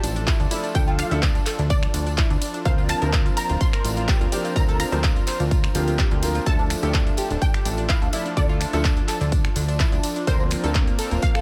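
A straight 4/4 pulse at 126 BPM drives this dreamy progressive house excerpt in D minor, where a punchy, up-front electronic kick enters at 0.3 s over a big-room kit of finger snaps, handclaps, hi-hat and ride, a jingly background tambourine and a funky, plucky analog bass, while a lush detuned pad holds chords, a nasal, round analog pluck spins phased arpeggios, a bright baby grand adds brilliant stabs, and a unison pluck carries the melody with tape echo, the pad, plucks, piano, bass, hats and cymbals all pumping under sidechain as the harmony moves between Dmadd9 and Bbadd9/D.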